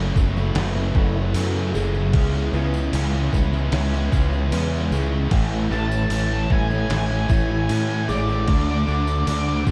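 Shoegaze-leaning dream pop rock in A major at 76 BPM, wistful and hazy, moving through F#m11, C#m7, Amaj7 and D in a short clip with a dark, close-sounding mix. An up-front, growling overdriven bass anchors a sludgy double-tracked distorted guitar, a background wall of thick fuzz guitar with subtle chorus, a lo-fi, slightly broken-up guitar through a small old amp bathed in reverse reverb, and a woody, shimmering twelve-string acoustic playing arpeggios through chorus and analog delay. A detuned 8-bit drum machine with a thumpy kick joins at 0.2 seconds alongside a distant, jingly tambourine, and an octave-fuzz lead guitar with analog delay carries a high melody from 5.7 seconds.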